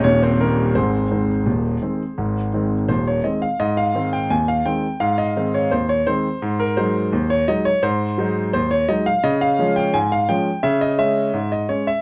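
Ragtime for solo concert grand piano, lively and jaunty in a straight 2/4, this short excerpt cut from a longer piece spans 12.0 seconds, its intimate, polished tone sitting up front with deep bass, long sustain and audible action noise in a moderate studio ambience as the harmony moves through Eb7, Ab, Ab7 and Db.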